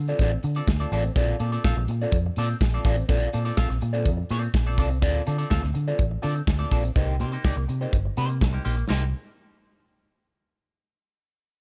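A muted, fingered electric bass opens this short disco excerpt, its dark, round, foam-muted tone sitting up front, with a modern studio drum kit and a semi-hollow electric guitar arriving a moment later. The mood is glamorous and driving, set in a straight 4/4. The drums sound acoustic and polished, with a punchy kick, a medium-tuned snare, hi-hat and crash cymbal placed prominently in an airy small-room space. The guitar plays a clean, picked accompaniment through wah, its hollow-body character adding a gentle glow beneath the rhythm section. The harmony moves from Dm7 to a long stretch of Bbmaj9 before settling on Cm7, and the overall production is dark and warm, with a small room ambience around the parts. All three instruments stop at about 9 seconds, as the piece shifts into a new section just before the cut.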